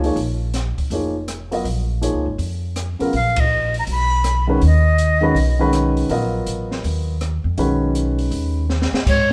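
A swung 162 BPM pulse in 4/4 drives this searching, cool modal jazz excerpt, with an open acoustic drum kit of dark ride and crash cymbals, hi-hat, rim clicks, a high-tuned snare and a boomy kick, and an up-front pizzicato upright bass with a woody, thumpy tone. A polished baby grand piano comps over Bbm7 moving to Abmadd9/Bb, and at 3.2 s a breathy, bright flute with vibrato and a crisp, chiffy attack takes the melody just as the band hits an accent. The group plays live together in a stone room with moderate reverb, and a drum fill at 8.7 s closes the passage.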